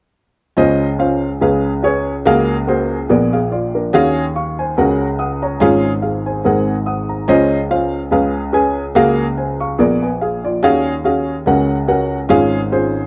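Gospel in a swinging 4/4, this short excerpt from a longer piece carries an uplifting, jubilant mood. A lone upright piano plays from 0.6 to 13.1 seconds, its tone worn, woody and slightly detuned, sitting up front with a natural character. The harmony moves through rich extended chords such as Dbmaj9, Gbmaj9/Db, Bb7b9 and Ebm11, and the piano spans a broad register from deep bass notes to bright upper tones. The progression comes round twice, with the second pass starting at 7.3 seconds. The sound is dry and close, in the manner of a 1970s studio recording, with a touch of studio reverb.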